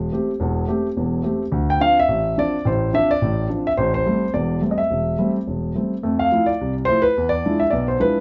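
A dark, mellow grand piano carries this brief, moody jazz fragment on its own, swinging briskly through a smoky progression from Am7 to Dm7 and Fmaj7 before landing on a tense E7b9. Its sound is intimate and up front, smooth with a vintage cast, and the noise of the piano's action can be heard beneath the notes, which reach from deep in the bass up into the treble. A moderate studio reverb gives the playing a small sense of room in this passage cut from a longer piece.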